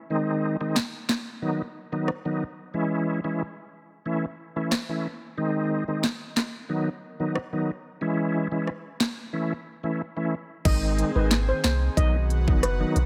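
A straight 4/4 dancehall groove at 91 BPM sets a bouncy, sultry mood as a reedy tonewheel organ with key click, chorus vibrato and fast rotary speaker opens at 0.1 s, an overdriven, up-front electronic drum kit with knocking kick, sharp snare, crisp hats, rim clicks, handclaps and crash joins at 0.8 s, and at 10.7 s a shimmering steel pan melody with tape echo, an airy, breathy pad with chorus and sidechain pumping, and a deep sub bass with a pitch-drop attack all arrive over a looping G#, B, C#m, A progression in light reverb, in this excerpt cut from a longer piece.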